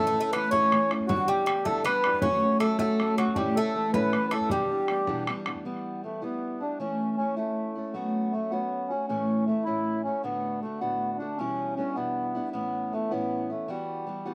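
A reedy, mid-forward accordion carries the melody up front in this driving, spirited Celtic jig in 6/8 at 105 BPM in E dorian, over a picked steel-string acoustic guitar with finger squeak, while a double-strung, metallic Irish bouzouki, an airy, hollow wooden flute set in the background and a boomy, band-limited bodhran drop away by 5.6 s, with slapback echo on the guitar, flute and bodhran, leaving accordion and guitar to carry this dry outdoor excerpt to 14.3 s.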